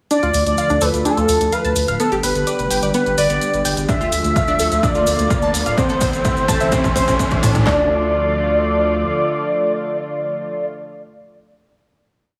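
Dreamy yet driving, this short progressive house piece is a single build that resolves onto a final held chord at 7.7 seconds. An up-front, mellow sawtooth lead sings arching motif phrases with vibrato, chorus, digital delay and a touch of vintage 12-bit sampler grit. Beneath it, a lush, airy unison pad holds sustained chords under a filter sweep, a detuned sawtooth pluck runs an arpeggiated sequence through digital delay, and a deep, saturated sine sub bass rolls in sixteenths, with all three pumping against the sidechain. Overdriven electronic hi-hats and a grainy, hand-played cabasa in sixteenths carry the groove, and a background riser climbs in from 2.5 seconds. The deep house drum kit arrives at 3.9 seconds with a punchy four-on-the-floor kick, fat snare and handclaps in a fill that drives into the final chord, all bathed in a moderate, lush hall reverb.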